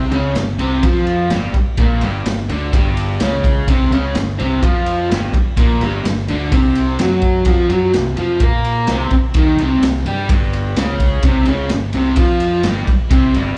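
A crunchy, double-tracked electric guitar riff opens this raw, swaggering garage rock excerpt at 127 BPM in a straight 4/4, picked with an overdriven bite and a slapback echo that sits up front in the mix. A dark, round fingered electric bass plays alongside it from the first moment, its fuzz-drenched tone heard both direct and through an amp. The acoustic drum kit enters at 0.1 seconds with a boomy kick, a medium-tuned snare and ride cymbal, captured in a small, pumping room with a saturated, gritty character, rolled-off top and the grain of a vintage 12-bit sampler. The harmony moves from G5 to C5 at 6.5 seconds and then to a rootless Bbm69 at 10.3 seconds, all tuned slightly flat to A4 = 439 Hz. The whole performance comes across like a live gig heard through the venue's PA, dubbed to cassette tape and bathed in club reverb, giving the short section a raw, gritty energy.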